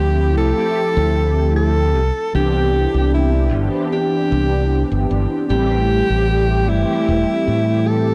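A vibrato-laced alto saxophone with a soft attack carries the jazz-style solo melody through tape echo in this nostalgic, melancholic vaporwave excerpt at 76 BPM in straight 4/4. Round, full-bodied synth brass built from detuned sawtooth tones, with a filter sweep, ensemble chorus and a cassette-tape grain, sustains the chords from G13sus4 to Cmaj9 at 2.0 seconds and Am7 at 5.5 seconds. Beneath it, a bright, punchy fingered electric bass sits up front. Light reverb gives the recording a small-room ambience.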